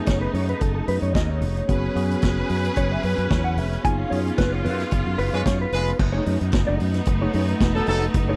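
A growly, up-front fingered electric bass drives this glamorous disco excerpt at 111 BPM, joined by a gritty vintage drum kit with dark cymbals and a punchy kick, while a clean electric guitar solo runs from 0.0 to 6.0 seconds over a band accent starting at 3.8 seconds. A mellow, compressed electric guitar with ensemble chorus and a worn, slightly out-of-tune tine electric piano with light overdrive fill out the accompaniment over lush, biting bowed strings, as the chords move from B13 through E69/F# and C#7/F#. Tight horn stabs enter at 5.3 seconds for the return to B13, all in a dry, close 1970s-style studio sound.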